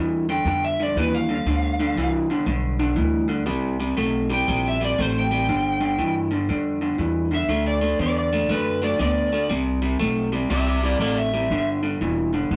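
An overdriven slide guitar sings the soulful melody up front from 0.3 to 11.7 seconds, riding over a laid-back electric blues shuffle with a 65% swing on the eighths. Beneath it, an electric guitar through a small old amp picks a slightly broken-up, lo-fi riff, while a pizzicato upright bass adds a woody, growly thump as the chords move from G7 through C5 and D. The rough rehearsal-room sound carries warm saturation and a moderate studio reverb, and the passage is cut from a longer piece.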